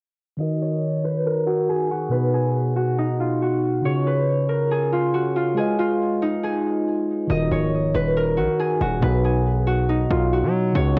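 A half-time trap pulse in 4/4 carries this melancholic, menacing hip hop fragment, cut from a longer piece. A fingerpicked concert harp leads the melody from 0.4 seconds, its acoustic, ringing tone placed up front and coloured by low-pass filtering, cassette tape character and tape echo. Beneath it, a mellow tine electric piano plays clean, direct accompaniment through a phaser and the same filtered, taped haze, over a chord cycle anchored in E-flat minor. A filter sweep runs through the opening section until 7.3 seconds, when a distorted 808-style bass arrives, aggressive and heavy, with a saturated sine body, a noise layer and a fast attack that decays. The whole has the intimate feel of a home cassette recording, with light, small room reverb.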